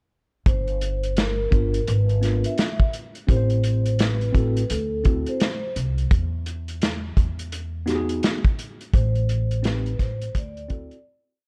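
A laid-back, swung jazz-hop beat at 85 BPM rides on a dark vintage drum kit with a tight kick, medium-tuned snare and sixteenth-note hats, while a woody pizzicato upright bass plays a syncopated line up front. A soft-mallet vibraphone sings short, ringing call-phrase motifs with a slow motor vibrato, and from 1.5 seconds a worn, slightly out-of-tune tine electric piano adds free rootless comping with grace notes over a cool, nocturnal progression that moves from Gm7 through Am7 and D9 to Emaj7. The dry, warm production keeps the whole piece close and intimate before it fades out from 8.9 seconds.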